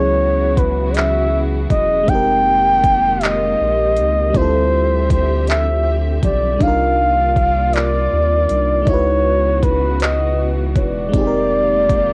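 A breathy, mellow flugelhorn carries a yearning jazz-style melody from the first moment over a lush, dreamy FM electric piano with a soft pad layer and chorus, a smooth bowed string section holding sustained chords, and a rubbery, hollow square-wave bass. This sultry, slow six-eight R&B fragment at 53 BPM adds an electronic drum kit at 0.6 seconds, with a knocking kick, metallic hi-hats and handclaps sitting up front alongside the horn and bass. Minor eleventh chords drift beneath a cassette tape tint and plate reverb on the horn, keys and strings, giving this home recording a light, hazy room.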